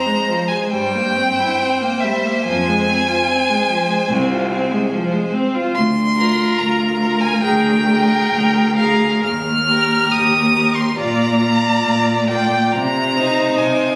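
A serene, tender passage from a slow romantic string quartet movement opens with a rich, focused first violin singing the melody up front, above a distant second line from the other violin and a smooth, even viola accompaniment, all bowed with vibrato and shaped with a rubato feel in 4/4. At 0.7 s a clear cello joins on the bass, also up front, as the harmony moves from F minor through Bb/D and Eb to a closing Cm7. The quartet sits in a moderate scoring-stage reverb, captured on a phone in a room with a club-like reverb.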